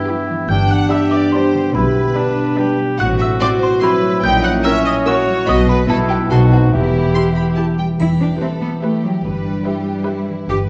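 A playful, whimsical cinematic film cue in a lilting triple metre, with a sneaky, quirky air and a minor-key harmony that slips through diminished chords before settling home. A trough xylophone played with soft rubber mallets carries the woody, mellow melody from the background until 7.5 seconds, while a lush violin section also traces the melody much more quietly. A clear, distant violin section and a cor anglais with light vibrato weave second lines, while a dark, roomy French horn section holds sustained chords and a ringing concert harp spins fingerpicked arpeggios throughout. A close viola section fills the accompaniment, and a cello section with a smooth, even double bass section anchors the low end. A triangle adds a brief bright glint at 8.0 seconds, and the whole cue sits in a recital-hall reverb with a dark production, cut from a longer piece.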